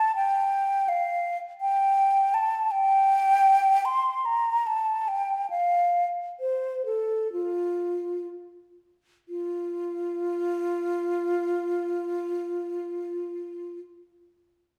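Serene and radiant, this baroque-style fantasia for unaccompanied flute unfolds with a free, rubato feel in 4/4, easing gradually slower from 0.9 to 9.3 seconds before a new section begins. The solo concert flute sounds airy and hollow, with tongued notes and vibrato, ranging from F4 to C6 and sitting up front in the mix. A wet recital hall reverb surrounds the line, giving the sense of hearing it from further back in the room, and the passage is cut from a longer piece, closing at 13.8 seconds.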